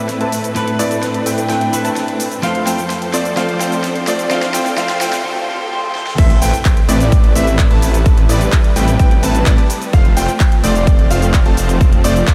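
A punchy, overdriven electronic kick sits up front from the drop at 6.2 seconds, joined by a thick, menacing detuned saw bass that beats with saturation in this emotional, anthemic festival progressive house piece in A minor at 128 BPM. Before that point, a build-up gathers over a big-room dance kit with a huge, overdriven snare, handclaps, hi-hat, cabasa and crash cymbal, with a drum fill, a filter sweep on the detuned supersaw stab riff and a short break. The supersaw's fast-attack, filter-plucked tone carries a cassette-tape grit and analog delay, while a clear, intimate grand piano plays high arpeggios with audible action noise, lush chorus and delay. A rich, bowed string section holds sustained chords in the background, and a clean, compressed electric guitar accompanies from 0.5 seconds until the drop. The harmony moves between Amadd9 and F, sidechain pumping breathes through the strings, piano, supersaw, guitar and bass, a very quiet riser, swell and impact arrive around 4.6 seconds, and the whole mix is soaked in a huge ambient reverb that gives this cut from a longer track a dreamy glow.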